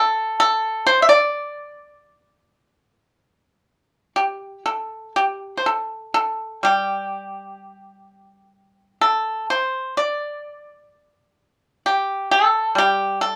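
A solo pipa, played with fingerpicks, carries this brief passage of Chinese traditional music, its acoustic tone warm yet percussive and placed up front. The mood is flowing and pastoral, with the pulse moving in uneven, rubato beats rather than a strict count. The pipa ranges from G3 up to E5, sounding dry and close while a moderate small-room reverb adds a touch of space around it. The music falls into two parts, with a new section arriving at 5.2 seconds and continuing until the clip ends at 13.4 seconds. Cut from a longer piece, it offers a short, intimate glimpse of a single plucked voice.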